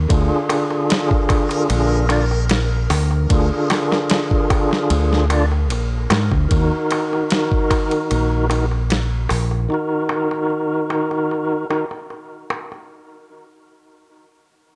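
A dark, punchy fingered electric bass and a dreamy, reversed swelling texture open this cinematic, hypnotic trip hop excerpt at 75 BPM in Eb harmonic minor, joined at once by a gritty, thumpy sampler-style drum kit, a clay-shelled darbuka and a fat, lightly overdriven tonewheel organ with fast rotary speaker and key click, moving from Bb7 to Ebm at 6.5 seconds, where the texture ends, all heard through a dry, cassette-tinged hardware sound.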